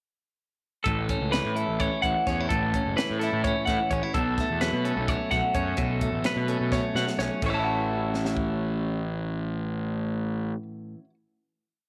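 A short, complete math rock and midwest emo piece in 7/8 at 256 BPM in A major, playful and intricate, where a twangy twelve-string electric guitar spins a spring-reverbed arpeggio ostinato from 0.8 seconds while an up-front clean electric guitar rolls fingerstyle arpeggios and a fuzzy, round picked bass drives a syncopated riff. A crisp, airy fusion kit with a high-tuned snare and punchy kick carries the odd-metre groove over chords moving from A69 to Bsus2, closing with a fill at 6.7 seconds. Everything settles onto an A6 chord at 7.4 seconds, the drums dropping out at 8.5 seconds as the guitars and bass let it hang in light reverb.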